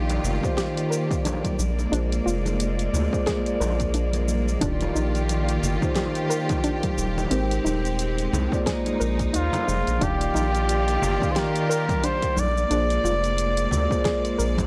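A swung sixteenth-note groove from an overdriven, punchy electronic kick and a deep house kit of hi-hat, shaker and fat snare, with distant ringing congas in the background, carries this relaxed sunset chillout excerpt. A round, dark analog bass sits up front beneath a mellow tine electric piano with tape echo, smooth bowed strings with vibrato, and a soft, warbling, detuned pluck playing chorused arpeggios from 0.6 s. At 9.4 s a close-miked flugelhorn enters with a jazz-style solo melody of scooped notes, all captured in a dry, gritty recording with little reverb.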